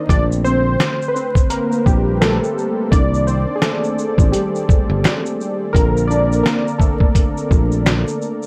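Nostalgic and melancholic, this short lo-fi hip hop fragment, cut from a longer piece, moves at an unhurried 85 BPM in 4/4 with a gentle swing on the sixteenths. Analog synth keys carry the lead from the start, their round, detuned sawtooth tone softened by chorus and a filter sweep, with a fast attack that decays into a mellow haze. Underneath, a sustaining fretless electric bass sits up front with a bright, growly edge, holding the low end across the harmony as it shifts from Bbmaj7 to Cm7 and back to Bbmaj7. The sampler-style drum kit is compressed, pitched down and muffled, pairing a thumpy kick and medium-tuned snare with hi-hat and shaker, and sounds re-recorded in a small room. Very quiet finger snaps slip in at 0.8 seconds, while light reverb and a bed of vinyl crackle give the whole fragment a dusty, worn patina.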